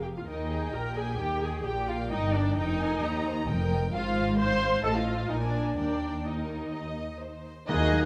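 Muted violins carry the lively, graceful melody of this quick classical-period orchestral movement in Eb major at 130 BPM, with a second violin line, violas, cellos and double basses, all con sordino and veiled, filling in with vibrato and a gentle rubato feel. The harmony moves from Eb through Fm/Ab, Adim and Bb7 back to Eb. At 7.7 seconds a clear clarinet, a mellow, hollow flute, a dark bassoon and hard-mallet timpani join briefly in the background alongside a very quiet French horn section, all heard through close, detailed microphones in a moderate recital hall reverb.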